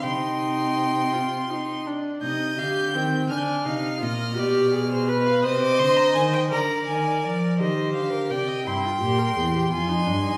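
In a straight 6/8 pulse at 56 BPM, counted in dotted quarters, this stately yet lively baroque-style string quartet fugue in C minor (tuned to A4 = 438 Hz) is a fragment cut from a longer piece. Two clear bowed violins carry the melody and a second line, both with vibrato, the first lighter, while the smooth viola and a focused, close-sounding cello sit up front with accompaniment and bass. The whole quartet is heard from further back in a reverberant recital hall, and the harmony moves from Cm through Ddim and G7/B before closing on Fm at 9.7 seconds.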